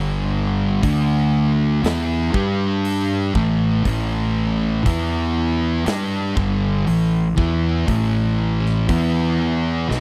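A thick fuzz guitar sits up front, grinding out a dark, distorted picked riff through this slow stoner and doom metal excerpt. A second fuzz guitar also plays the riff further back in the mix, and together they move through heavy power chords from G5 to D5 and on to A5 and E5. Beneath them, a fingered electric bass adds a growly, punchy overdriven fuzz low end, placed up front alongside the first guitar. A big acoustic rock kit joins at 0.8 seconds with hi-hat, a tight kick and a medium-tuned snare, set in a bright stone room. At 60 BPM in a straight 4/4, the mood is sludgy and hypnotic, captured with a dry, close 1970s-style studio sound and a hint of small room ambience.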